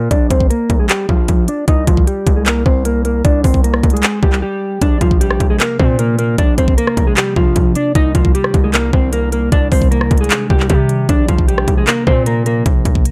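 Eerie and melancholic, this excerpt of half-time trap in C minor moves at 153 BPM in 4/4. A dark, clean electric guitar carries the melody up front, softened by analog chorus and a low-pass filter, and a filter sweep colours it through the opening 4.8 seconds before a brief break at 4.4 seconds. Beneath it, a distorted 808-style bass hits heavy and saturated, its sine tone layered with noise, while the trap drum kit sits forward with a knocking kick, crisp hi-hats, handclaps and rim clicks. At 4.8 seconds a very quiet, glassy FM pad enters with ethereal sustained chords, shifting through Bbadd9 and Cmadd9. The production is dark and warm, set in a digital ambience.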